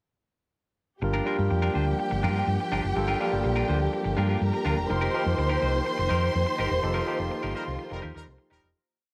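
Disco at 124 BPM with a danceable, celebratory feel, where a round, up-front hollow-body bass plays a syncopated line with chromatic approach notes under choppy sixteenth-note semi-hollow guitar, a barky tine electric piano pushing spread chords, a sustained pad from a dark, woody string section, and long high lines from a second, smooth-topped string section with portamento, as the groove moves from Gm7 to F9sus4 in a small room before the band accents and fades from 6.8 seconds, with a distant horn section adding slapback-echoed punches from 7.6 seconds.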